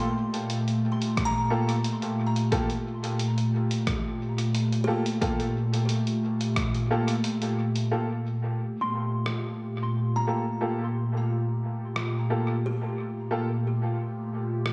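Spacious and deep, this ambient dub fragment sits in a steady, straight four-four groove over a single Gm9 chord. An airy, breathy pad carries sustained chords throughout, dark and up front, its slow attack and long release thickened by chorus. A woody upright piano drops boxy, slightly detuned stabs through a low-pass filter and dub echo until 13.5 seconds, while a close-miked kalimba spins hollow, plucked arpeggios softened by its own low-pass filter and tape echo. A muffled, compressed sampler-style kit ticks out hi-hat and rim click with dub echo, joined from 1.2 to 6.7 seconds by a punchy, overdriven electronic kick. A moderate echo chamber reverb gives the mix a roomy digital ambience.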